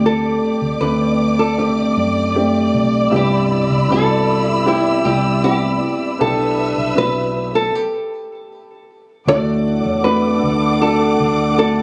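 Captured on a phone in a small room with club reverb and compression, this melancholic pop ballad excerpt feels close and emotional. A woody, intimate upright piano with audible action noise and a lush, bowed string section with portamento support a small, fingerpicked nylon-string guitar melody, while a round, foam-muted electric bass holds the low end. A distant, roomy French horn section adds a background second line from 3.1 s, and the music halts at 7.7 s before returning at 9.3 s on a new section.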